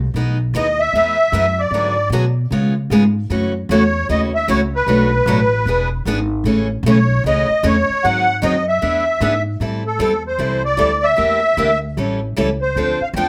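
A reedy musette accordion carries the melody up front, its musette tuning giving a shimmering, mid-forward voice bathed in plate reverb from 0.6 seconds. This is a virtuosic, swinging slice of acoustic string swing in the jazz manouche style, cut from a longer piece at 152 BPM in 4/4 with a swing on the eighth notes. Beneath it, a bright picked steel-string acoustic guitar with fresh strings supplies the accompaniment. An upright bass on gut strings sounds woody, dark and thumpy from the very start at 0.0 seconds. The harmony begins on Emaj7 and moves through a chain of seventh chords before settling into A minor at 9.6 seconds, where a new section opens on Am7 and heads toward Dm7. All three parts sit up front in a lively club room with a short, wet reverb.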